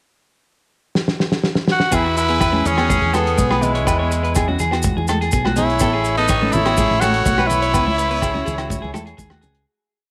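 A sunny, joyful highlife guitar band piece in E major at 124 BPM opens with a soul drum kit playing a fill at 1.0 seconds, its smooth, medium-tuned snare and tight kick sitting up front with a cassette-tape tint. A raspy, growling tenor saxophone enters just before the full band arrives at 1.9 seconds, playing a motif-based melody of call phrases with light vibrato, colored by tape echo. Beside it, a brilliant, close-miked trumpet adds a forceful harmony line, mostly in thirds. Two clean, picked electric guitars play ostinatos, one a warm accompaniment and the other darker arpeggios set further back, while a round, punchy fingered bass carries a syncopated figure. Ringing, high-tuned congas, vintage-sounding agogo bells playing a bell time line and grainy, saturated maracas fill in the percussion behind the band. The chords move from E to A to C#m in this homespun cassette recording with small-room ambience and light reverb, and the piece fades out from 7.7 seconds.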